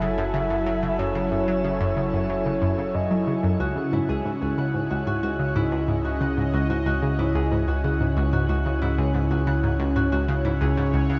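A soft, octave-layered synth lead with dark vibrato floats over an up-front, sweeping resonant pad, a bright analog pluck riff and a deep, round bass as this hypnotic, expansive slice of sequencer-driven space music moves from F#m7 to C#madd9, where the lead drops out at 3.6 seconds and a ringing, fingerpicked concert harp takes up tape-echoed arpeggios, all bathed in a moderate shimmer reverb within a dark, warm mix.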